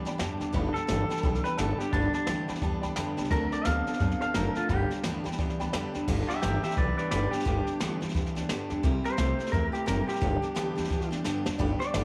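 Rollicking and rowdy, this swung rockabilly excerpt charges along in 4/4, cut from a longer piece. An upright bass thumps out a woody, pizzicato low end while a jazz kit played with brushes adds a boomy kick, dark cymbals and a medium-tuned snare, with a short drum fill at 11.3 seconds. A bright, full-bodied steel-string acoustic guitar picks along beside a lo-fi, compressed electric guitar riff through a small old amp that sits up front, while a detuned, jangly upright piano chimes from the background, dropping out at 6.0 seconds and returning at 11.6 seconds. A second electric guitar through a small old amp, twangy and slightly broken-up with tape echo, carries the melody from 0.7 seconds and takes a clean solo from 6.1 seconds. The chords move from G to D7 and back, then to C and home to G, all in a light reverb with a natural small-room feel.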